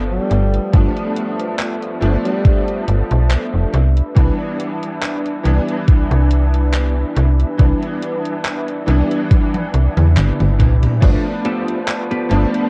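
This recording has the soft, echo-heavy haze of a cassette tape, with light reverb and a nostalgic, dreamy vaporwave mood, cut from a longer piece with a gentle swing. A mellow tenor saxophone with vibrato, subtone and scooped notes, trailed by tape echo, sings a brief jazz-style phrase that ends by 2.8 seconds. Beneath it, a bright, clangy electric grand piano with ensemble chorus and analog delay plays the accompaniment, while a lush, detuned sawtooth pad with chorus and phaser holds sustained chords that move from G9 to Cmaj9. Up front, a snappy FM bass with a metallic attack sits alongside a thumpy, tape-warm electronic kick drum, and a gated 80s digital drum machine adds crash cymbal, handclaps, hi-hat and toms, with a drum fill starting at 9.3 seconds. At 11.4 seconds, shortly after the harmony returns to G9, a clean, twangy electric guitar with lush chorus and analog delay enters with a short riff.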